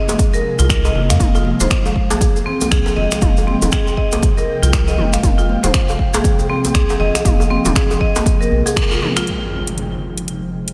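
Earthy and spiritual, this dreamy afro house excerpt moves at 119 BPM in F minor with a swung 16th-note feel, opening on an Fm7 chord as an ethereal, chorused and phased pad sustains beneath woody, bright marimba arpeggios struck with hard mallets and trailed by diffuse delay, both pumping against the punchy, up-front electronic kick, as does a round, deep analog bass. A layered house kit of finger snaps, metallic hi-hats and toms drives the groove alongside ringing high-tuned congas, a cracking djembe with metal rattles and a grainy tube shaker, all set in a lush hall reverb. After a band accent at 8.8 seconds, an electronic impact lands at 9.3 seconds while a filter sweeps across the lingering pad to the cut at 10.7 seconds.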